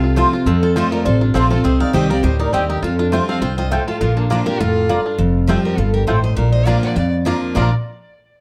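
Virtuosic and driving, this bluegrass excerpt runs at 203 BPM in Bb major with a swung feel, cut from a longer piece and moving through F, Cm, Fadd9 and Bb before a brief shift to a new section at 5.2 seconds. A twangy, percussive banjo and a bright, full-bodied picked acoustic guitar carry the melody together, while a smooth bowed fiddle with light vibrato and tape echo adds a second line. Underneath, a second, up-front acoustic guitar picks the accompaniment over a woody, thumpy upright bass, and a mellow, round mandolin enters at 0.2 seconds with stabs, all set in light reverb and a dark production.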